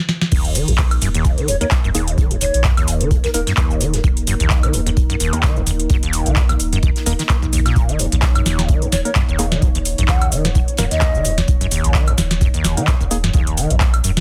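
A squelchy, resonant sawtooth acid bass riff with overdrive, chorus and delay drives this raw, gritty acid house cut at 129 BPM in 4/4, with a light 16th-note swing, tuned to A4 = 443 Hz and launched by a brief drum fill. Beneath it sit a round sine sub bass with tube saturation, a deep tape-warm electronic kick, a booming analog drum machine of tonal snare, metallic hats, handclaps, cabasa, woodblock and crash, and a very quiet, dry 70s kit of hi-hat and snare. A detuned, moody pad holds dark sustained chords, and it pumps with sidechain compression along with both basses; a hollow, wave-folded organ stab with chorus punctuates from 1.6 s, and an airy, mellow concert flute with vibrato and dub echo surfaces at 1.5 s and again at 8.9 s, in a dense, heavily limited mix with little reverb.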